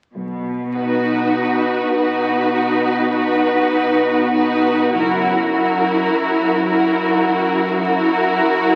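Bowed cello and double bass sections open this slow, rubato string-orchestra passage in B major at 0.1 s, the cellos smooth and even with vibrato, the basses soft-attacked with expressive portamento in the background. At 0.8 s, two lush, focused violin sections step up front, one carrying the lyrical melody and the other a second line, and a close, expressive viola section with vibrato and portamento enters alongside them. The harmony moves from B to F#7 at 4.9 s, and the basses drop out at 6.0 s. A scoring-stage reverb and the crackle of a very old 78 rpm record give this short, lyrical fragment from a longer romantic movement a warm, aged glow.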